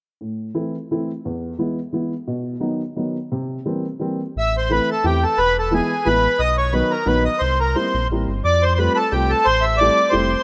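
A reedy, full accordion carries the melody up front, entering at 4.4 s and giving this musette waltz its nostalgic, whirling character. The piece moves briskly at 176 BPM in 3/4 in A minor, with a swung lilt on the eighth notes. A dark upright piano, mellow and woody with a short sustain, sits up front and plays the accompaniment, alone from 0.2 s until 4.4 s. When the accordion arrives, a deep sine sub bass doubled at the octave joins it, with a fast attack and sustained notes, until the close at 10.4 s. The harmony cycles through Am, E, B and C7 before turning to Fadd9 and settling on Am7. Light reverb and a small-room ambience give it the rough feel of a home demo, and the recording is a short cut from a longer piece.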